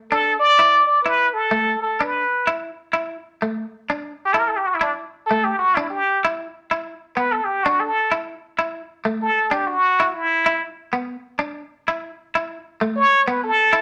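A plunger-muted trumpet with a punchy, vintage wah-wah bite and jazz-style vibrato leads this sunny, carefree highlife fragment in a straight 12/8, taking a forceful solo from 3.9 seconds over a twangy, compressed clean electric guitar picking bright accompaniment through chords such as Dsus2, A5 and G6 in a moderate studio reverb.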